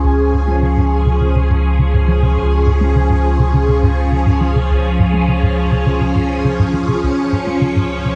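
From the first second, a swirling, bright string machine holds sustained Db major chords up front through ensemble chorus, phaser and shimmer reverb, while a hollow, bouncy square-wave pluck riff with chorus and delay sits in the background and a deep, round sine sub bass anchors the low end, all in a luminous, cosmic stretch of sequencer-driven ambient space music at 103 BPM in 4/4, with a filter sweep moving across the synth arpeggio throughout the 8.2-second clip and a huge 9.3-second reverb casting a dark, warm glow.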